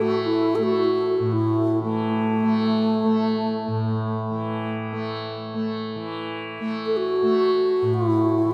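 World meditation music in free time, this brief excerpt feels peaceful and spacious, with a bass flute carrying the melody between A3 and A4 over a tanpura drone, both sounding from 0.0 to 8.5 seconds. The flute is airy and reedy with lifted highs, vibrato and tongued notes, trailed by a diffuse ambient delay, while the mellow, softly plucked tanpura buzzes and shimmers up front. A cathedral reverb with a 5.0-second decay sets the pair in a vast, echoing space.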